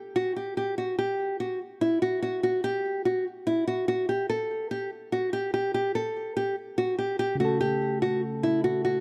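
A fingerpicked nylon-string guitar carries the melody from 0.2 seconds, small and up front, in this brooding, hard-hitting hip hop excerpt at 145 BPM with a half-time feel. At 7.4 seconds, soft, round electric-piano-like synth keys with a fast attack and chorus join on an A6/C# chord, mellow and decaying. The dark, warm production sits in light studio reverb.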